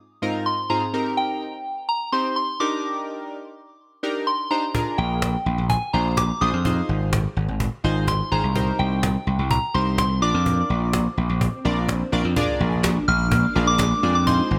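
Bright, 1980s-style digital production with light reverb frames this upbeat, carefree dance-pop excerpt at 126 BPM, where glossy, detuned chorused retro synth keys and a pure, warbling soft synth bell melody carrying chorus and delay open the piece, a woody cajon joins at 4.7 seconds, a punchy, overdriven gritty slap bass arrives at 5.0 seconds, and a very quiet crisp group handclap, faint electronic swell and impact, and a blurred, evolving granular cloud pad entering at 13.0 seconds color the final stretch.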